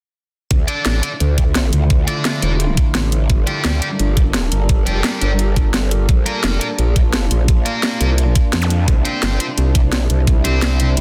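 A growling, wobbling bass sits up front in this short cut from a dark, technical drum and bass track at 172 BPM in D minor, its formant-filtered tone saturated, overdriven and thickened with chorus and sidechain pumping. A knocking electronic kick and an overdriven kit with a cracking snare and bright hats drive the straight 4/4 feel from 0.5 seconds, the kick dropping out at 10.3 seconds. High-gain distorted guitar stabs, picked and fed through digital delay, enter at 0.7 seconds. A metallic, inharmonic FM drone holds eerie sustained chords in the background with its own reverb and pumping, while a very quiet granular pad, cloudy and blurred, drifts in from 2.9 seconds. The harmony moves through Dm, Gm, Bb and C, a brief electronic zap lands at 8.6 seconds, and a reverse cymbal closes the cut in a dense, heavily limited, dry and aggressively futuristic mix.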